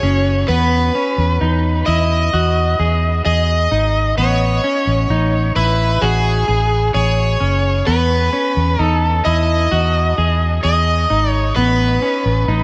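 This dreamy, ethereal dream pop excerpt opens with all three parts together at a slow 65 BPM in a straight 4/4, in E major. A bright, overdriven slide guitar carries the melody up front, with delay trailing its notes. Beneath it, a clean semi-hollow guitar plays picked arpeggios drenched in lush chorus and delay. A dark, round, foam-muted bass sits low and amped, also placed up front. The harmony moves from Emaj7 at 0.5 seconds to A6 at 4.2 seconds, returns to Emaj7, and settles on A. Light reverb and a digital ambience give the recording its airy, floating space.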